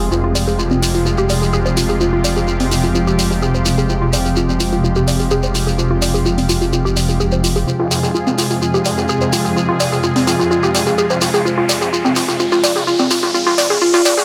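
A straight 4/4 pulse at 127 BPM drives this hypnotic, dramatic melodic techno excerpt in F minor, with a close, dry shekere entering at 0.1 seconds and bright, overdriven electronic hi-hats at 0.4 seconds over a gritty, saturated sawtooth bass holding F1 and a swarming, detuned drone sitting in the background with its own reverb. A lush, thick unison pad sustains Fm chords up front while a woody, wave-folded pluck spins chorused, delayed arpeggios. From 7.7 seconds a build-up takes hold as a filter sweeps across the pluck, and an electronic riser joins at 10.9 seconds, all framed by light reverb.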